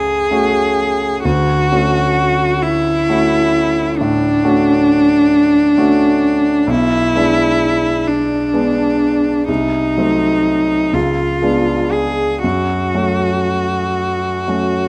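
A bowed cello with rich vibrato carries a smooth, even melody up front over clear, intimate grand piano accompaniment with audible action noise in this elegiac, solemn romantic classical duo in F# minor, moving slowly in a rubato 12/8 at about 38-45 BPM through dark diminished harmonies and a C#7b9 before settling back on F# minor at 12.4 s, all heard through close, detailed microphones in a moderate recital-hall reverb.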